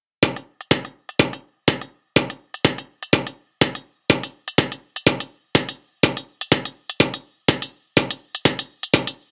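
A swung 16th-note groove at 124 BPM in 4/4 drives this bouncy, swaggering bass house fragment, cut from a longer piece. The electronic kick drum sits up front with a knocking, layered punch, re-recorded in a small room and high-pass filtered along with its room sound, playing from 0.2 to 9.0 seconds. Crisp, layered electronic hi-hats ride lower in the mix beneath a low-pass filter, and the whole sound stays dry with little reverb.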